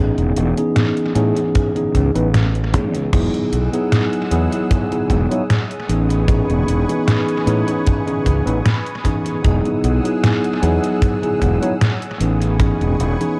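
A chorused, tape-echoed, bell-like tine electric piano opens this dreamy, woozy vaporwave fragment alongside a round, overdriven fuzz bass, with a detuned 8-bit drum machine's fat snare, hi-hat and crash arriving at 0.2 seconds, a punchy big-room kick joining at 1.6 seconds, and a thick, slow-attack sawtooth-and-square unison pad settling in lower in the mix at 3.1 seconds, all held in an echo-heavy, cassette-tinged sound with light reverb.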